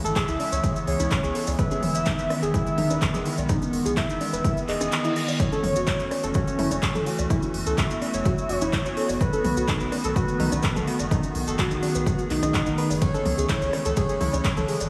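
A punchy, up-front electronic kick drives this emotional progressive house excerpt, joined by smooth-hatted deep house drums, grainy cabasa, tape-warm bongos, congas and toms in the background, a round analog bass, a soft detuned pluck arpeggio through tape echo, an evolving, warbling wavetable pad on sustained chords, and a full octave-layered synth lead with vibrato and diffuse delay. The pad, pluck, bass and hand percussion pump under sidechain in a dreamy, reverb-soaked hall, with a reverse cymbal rising at 4.7 seconds into the F#m7 chord.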